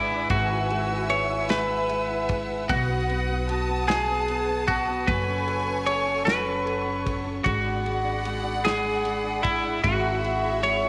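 A bright, twangy twelve-string electric guitar carries the picked melody up front, its clean, compressed tone steeped in spring reverb, in this aching, melancholic six-eight pop ballad at 50 BPM, cut from a longer piece. Beneath it a clear violin section plays a smooth, bowed second line with vibrato, a rich string section holds sustained chords, a warm vintage grand piano with long sustain supplies accompaniment, and a woody, thumpy pizzicato upright bass anchors the low end. A loose indie drum kit with a tight kick, medium-tuned snare and dark ride cymbal sits in the background from 0.3 s, and the mix is set in moderate plate reverb and small room ambience over chords moving from Eadd9/G# through B7, F#m and G#m7b5.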